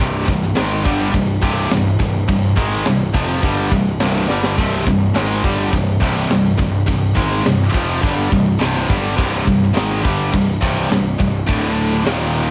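A double-tracked, high-gain guitar riff opens this epic, relentless heavy metal excerpt in C minor at 104 BPM, joined at once by a growly, fuzz-laden picked bass and, at 0.3 seconds, a tight, polished drum kit with a high-tuned snare and bright crash cymbals. The drums play a fill at 4.3 seconds, and the harmony holds on C minor until a shift to a D5 power chord at 11.5 seconds. The up-front guitar carries distortion and cassette tape colour, the drums also have a tape tint and an airy big-room character, and the whole home cassette recording sits in light reverb.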